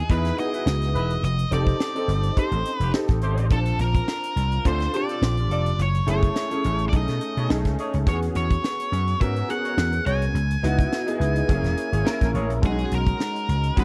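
A punchy, up-front slap bass drives this slick, nocturnal slice of polished 1980s jazz-funk pop at 105 BPM with a light sixteenth-note swing, entering at 0.1 seconds alongside a tight funk drum kit with a high-tuned snare and tight kick. A dark, distorted octave-fuzz lead guitar carries the melody over clear grand piano chords touched with ensemble chorus, moving through jazzy harmony from C#m9 to B69, while a mellow horn section with light vibrato adds a second line from 0.5 to 12.5 seconds. The sound is dry and close, like a 1970s-style studio recording, and the passage is cut from a longer piece.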